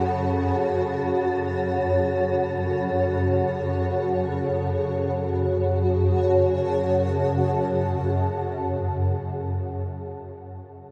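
Cavernous and unsettling, this dark ambient drone piece, cut from a longer work, hangs on a single minor chord inside a vast, reverb-soaked space. At the low foundation, a swarming drone of detuned sine and sawtooth voices, roughened by ring modulation and wave-folding, grinds with a tense, granular restlessness through ensemble chorus until 9.2 seconds. Above it, an evolving granular cloud pad holds blurred, detuned triangle chords through analog chorus, a moving notch shaping its hazy tone, and it lingers until 9.7 seconds. Both of these parts sit up front with slow attacks and long releases. Far in the background, an airy, breathy wind-like noise layer tuned to a single pitch drifts behind them and drops out at 5.1 seconds. An enormous, dreamy reverb tail blurs every layer into one dim, shadowy mass.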